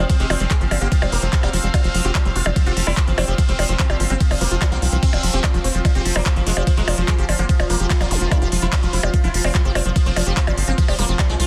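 Driving and hypnotic, this psychedelic trance passage runs at 146 BPM in 4/4, with an overdriven, knocking electronic kick up front beside a tight, dark sequencer bass and a techno kit of smooth hats, handclaps, crash and ride cymbals and percussion blips. A buzzing, plectrum-plucked sitar carries the melody through phaser, gritty 12-bit sampler colour, sidechain pumping and dub echo, while a squelchy, resonant liquid acid bass riff, a bubbling stepped-filter texture holding sustained chords, and a reedy, gut-toned string section sit in the background. A very quiet metallic wobble bass adds a distorted second line briefly at the start and again around 5.1 to 6.9 s, a faint electronic zap flickers at 8.1 s, and the whole is a dense, heavily limited modern master with little reverb.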